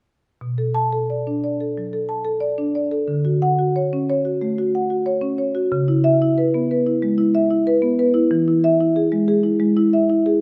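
A solo marimba played with soft mallets enters at 0.4 s, its woody, round tone sitting up front in a reverberant recital hall. In this reflective, hypnotic contemporary classical passage, the phrasing moves freely in rubato within 4/4 as the harmony passes from Bm7 through Dmaj7 and C#m7 to E, spanning B2 to A5. The fragment, cut from a longer piece, ends at 10.4 s.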